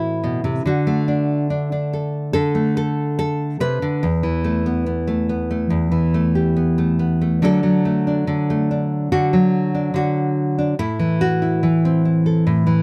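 A solo nylon-string guitar opens this short folk excerpt, fingerpicked and set up front, with a deep classical tone and finger squeak audible on the strings. The mood is intimate and wistful, carried at an unhurried pace in a straight four-four feel. The harmony moves from A minor to D and then settles on E minor, before a second passage from 7.4 seconds dwells on D and returns to A minor at 10.8 seconds. The guitar ranges from its low E up to the B in the middle of the treble, filling the brief clip on its own. The sound is a dry, close recording in a 1970s studio style, touched by a light reverb.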